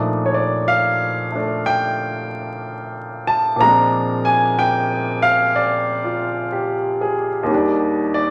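A clear baby grand piano plays alone and up front, its natural tone ringing with long sustain across a span from low bass notes to bright upper register in this short solo jazz fragment cut from a longer piece. The feel is relaxed and swinging in four, moving from Bbmaj7 to Bb9 at 3.6 seconds and settling on Ebmaj7 at 7.5 seconds. A wet large-studio reverb surrounds the instrument, while a vinyl crackle adds a dusty, nostalgic patina.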